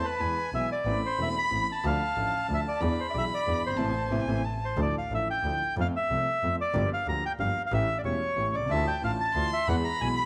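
In a flexible, rubato three-beat lilt, this sultry, passionate tango excerpt from a longer piece unfolds. The reedy, dark bandoneon carries the melody up front throughout. A close, expressive bowed violin adds a high second line with vibrato, portamento and a soft attack; it steps away at 4.8 seconds and returns at 8.7 seconds. Underneath, a vintage-sounding concert grand piano supplies intimate accompaniment with deep bass and audible action noise, while a single bowed double bass gives an earthy, clear foundation with an airy bow. The full band lands an accent starting at 3.8 seconds before the harmony turns toward a new minor centre, all bathed in a moderate echo-chamber reverb that lends the ensemble a lingering, roomy glow.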